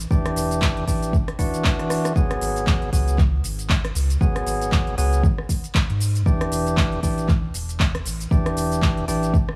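A deep, sine-and-triangle sub bass with octave, pumping to the sidechain, opens this late-night, moody deep house excerpt at 117 BPM alongside a swung kit of smooth hi-hats, handclaps, rim click and shaker, before a layered electronic kick and up-front, lightly overdriven tonewheel organ stabs with key click, gritty 12-bit sampler texture and dub echo join at 0.1 seconds, moving from Em7 to G#m7 after a drum fill at 1.8 seconds and back to Em7 at 6.3 seconds in a small room ambience.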